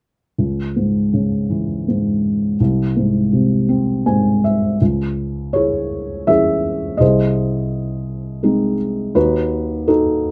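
A close, intimate sound comes from a felt-muted upright piano placed up front in a small room with a moderate touch of reverb. This short cut from a longer piece is a lyrical, classical solo piano work in 3/4 at about 82 BPM, played with a flexible rubato feel and a melancholic, reflective mood. The piano's tone is soft, dark and boxy, with short sustain that keeps each note hushed and mellow. Its harmony moves between C#m and G#/B#, settling on D#dim near the close. A brief fill between 3.7 and 4.8 seconds leads into the second section, which carries the piece to its end at 10.3 seconds.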